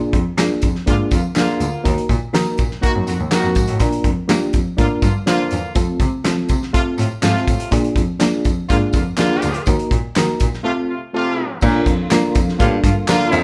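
A gritty, up-front soul drum kit with a fat snare, tight kick and dark cymbals drives this joyful, uptempo 1960s-style soul cut in Bb major at 123 BPM. A reedy, slightly out-of-tune electric piano pulses with fast tremolo, a bowed cello carries the bass with a nasal, earthy bite, and handclaps and tambourine sit dry in the background, while a clear, punchy horn section adds a second line from 0.9 seconds. After a break at 10.6 seconds, a distant baritone saxophone riff and a very quiet tonewheel organ through a slow rotary speaker join at 11.6 seconds, the whole band playing live in one large studio room with moderate reverb that gives the cut a warm glow.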